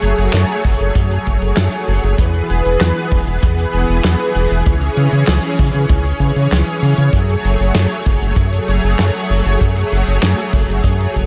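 A dreamy, reverb-soaked mix wraps this romantic, nostalgic synthwave excerpt, cut from a longer piece, in a moderate plate tail. Up front, a smooth, detuned supersaw holds soft-edged sustained chords through a chorus shimmer, while a round, dark analog bass with tube saturation sustains beneath it, both pumping with sidechain. A natural small-room drum kit adds handclaps, hi-hat and a fat snare, joined at 0.6 s by a punchy acoustic kick, as the harmony moves through F#madd9, E and C#m before returning to F#madd9.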